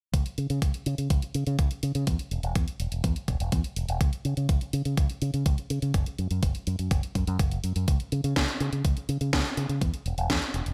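Bright, dry 1980s-style digital production frames this short italo disco excerpt, which is cut from a longer piece and moves at 124 BPM in a straight 4/4 in C# minor. A fingered electric bass sits up front from 0.1 s, its punchy, direct-and-amped tone shaped by an envelope filter and softened at the top by a low-pass filter as it ranges from E1 to C#3. The electronic kick is equally forward: a thumpy, sampler-style hit with overdrive, re-recorded in a small room and given a touch of studio reverb, dropping out at 10.4 s. A layered house drum kit sits lower in the mix, pairing a cracking snare with warm hi-hats, treated with studio and gated reverb. The result feels nostalgic and danceable, a lean groove of bass and drums carried through to 10.7 s.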